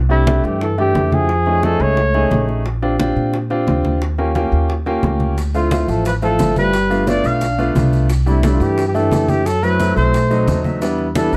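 A dark, lightly reverberant production frames this lively, danceable excerpt of Afro-Cuban jazz in C major, moving at a brisk 176 BPM in a straight four. Up front, a woody pizzicato upright bass anchors the low end while a clear, polished baby grand piano comps with long sustain through rich extended chords, adding a short fill just after 10.3 seconds. A breathy trumpet with light vibrato and scooped notes carries the melody from a roomy distance, with a mellow, close-miked trombone shaping a second line beneath it in the background. Both horns drop out briefly after the opening bars and return around 5.5 seconds. Ringing, low-tuned congas played with hard hands and round, soft-handed bongos keep up the percussion in the background, and grainy maracas join faintly from afar at 5.4 seconds.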